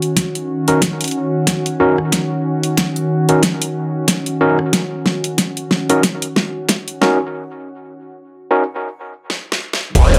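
Gritty and funky, this glitch hop excerpt rides a swung 4/4 groove and builds up throughout. A warbling, nostalgic pad of detuned sawtooth and triangle tones holds sustained chords from the start, its chorus and built-in reverb giving it a lo-fi haze while sidechain pumping makes it breathe until it stops at 7.3 seconds. Up front, a dubstep drum kit with a huge snare, bright hats, rim clicks and crashes plays drum fills over a knocking, tape-warm electronic kick, all set in a small room's ambience. A barky, overdriven tine electric piano, pushed through a combo amp, jabs out stabs with delay and sidechain pumping. After a break, the build lands on an impact at 9.9 seconds, and at 10.0 seconds a sub drop murmurs in the background as a saturated growl bass bursts in, wobbling and aggressive through its formant filter and chorus.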